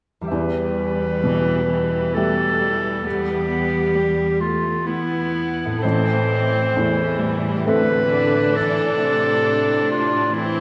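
Set in a wet concert hall, this moving, bittersweet cinematic film-score excerpt in E minor drifts at 66 BPM in a rubato 3/4, with a bright, present solo clarinet up front carrying a second line over soft, felt-muted upright piano, a smooth, close viola section with vibrato, a distant bowed cello section on the bass, and ringing fingerpicked harp arpeggios in the background, moving from Em to Am at 5.8 seconds.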